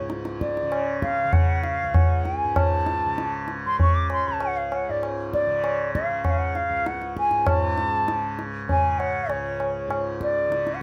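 A pure, expressive bamboo bansuri melody with tongued notes and vibrato opens this serene, meditative excerpt of Hindustani classical music in raga bhairav on C# at 98 BPM, over a softly plucked tanpura drone that buzzes and shimmers beneath it, joined at 0.1 seconds by low-tuned, ringing tabla with a small-room sound, all captured with close, detailed microphones and light reverb before a new section begins at 7.5 seconds.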